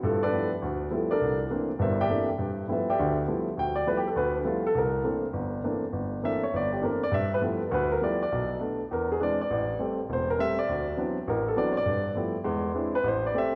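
A warm, up-front grand piano plays alone from E1 to G5 in this relaxed, swinging jazz passage at 203 BPM in G mixolydian, moving through G13, C13, Bm7, Eaug7, Am7 and D13 chords beneath a wet concert-hall reverb, with the 13.5-second piano solo cut from a longer piece.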